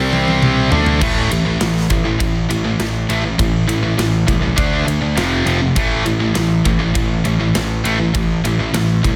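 Heavy metal in A minor at 101 BPM, relentless and aggressive, this clip opens with a drum fill on a big, up-front rock kit with a boomy kick while a very quiet, brassy analog pad holds sustained chords for the first second before falling away. Two bright, high-gain distorted guitars drive a picked riff throughout, anchored by a growly overdriven bass, as the progression moves from C5 and Am to A5, with D5 and F5 at 4.6 and 5.2 seconds before returning to A5. The dense, heavily limited modern master carries a light reverb.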